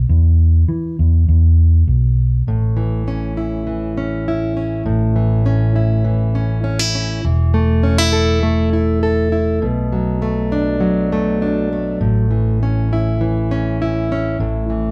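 Indie folk with a building arrangement, this uplifting excerpt moves at 101 BPM in a straight 4/4 feel in A major. A fingered electric bass opens alone, its dark, round, amped tone sitting up front. At 2.5 seconds a fingerpicked plugged-in steel-string acoustic guitar joins, a full-bodied jumbo sound carrying the accompaniment just as forward in the mix. The harmony moves from an opening E5 through A, Esus4 and Bm7 before landing back on A at 12.0 seconds. The band plays live in one room, with a moderate large studio reverb giving the pair a natural sense of space.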